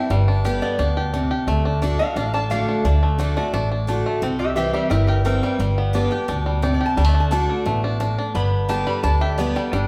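Bluegrass in G major at a driving 175 BPM, this joyful excerpt from a longer piece features twangy, percussive fingerpicked banjo carrying the melody while a metallic, nasal lap resonator guitar, played with a steel bar, takes a solo from the start to 9.7 seconds. A bright, full-bodied picked steel-string acoustic guitar with audible finger squeak picks out the accompaniment, and a woody, thumpy pizzicato upright bass sits up front, entering at 0.1 seconds. The band plays live in one room, bathed in a lush large-studio reverb as the chords move from G through D and C and back to G.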